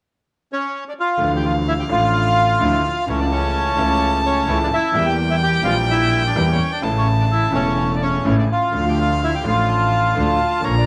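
Sultry and dramatic, this tango moves with a rubato feel in 4/4, heard as a short cut from a longer piece. A reedy, vintage-sounding bandoneon sits up front carrying the melody from 0.5 seconds, and the rest of the ensemble joins at 1.2 seconds. A warm, nasal violin, bowed with vibrato, adds a smooth, even second line, while a bright concert grand piano with brilliant tone and deep bass supplies the accompaniment. A clear, focused double bass, bowed with vibrato and placed up front, anchors the low end, and a dark chamber string section with a gut-string, period-style tone plays very quiet stabs underneath. The harmony moves from Dmadd9 through A/C# and Edim to A before settling on Dm, all captured with close, detailed microphones and a light reverb.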